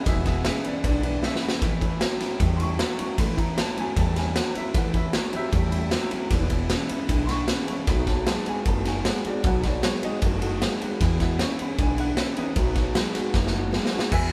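This rowdy, rollicking rockabilly excerpt in E major at 154 BPM opens with the whole band playing live in one room, where a twangy, slightly broken-up electric guitar riff from a small old amp rides over a thumpy, woody pizzicato upright bass and an up-front, saturated garage drum kit with a punchy kick, medium-tuned snare, crash and ride. Behind them, a picked steel-string acoustic guitar and a worn, slightly detuned upright piano with audible action noise fill out the accompaniment as the chords move from E through A and B, with drum fills at 1.2 and 13.3 seconds. Light reverb and a faint mains hum round out the live-room sound.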